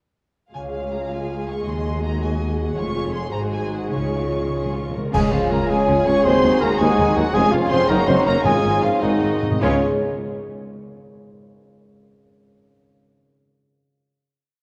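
A ringing, fingerpicked concert harp spreads broad broken chords beneath a smooth, lightly vibrato violin melody in this graceful, cheerful romantic orchestral piece in Db major, moving in a fast, rubato 6/8 at 96-111 BPM. Beneath it lie lush bowed violas with tremolo and a driving ostinato, cellos with a driving bass ostinato, and double basses doubling the bass line. Dark cymbal swells, clash cymbals and bass drum arrive at 2.8 seconds, followed by timpani rolls. At 5.1 seconds a band accent brings in a clear clarinet and a hollow, distant flute doubling the tune, a tight French horn section, and a very quiet tuba on the bass line. The whole recording sits in a lingering concert hall reverb, colored by the warble and pitch drift of worn old cassette tape.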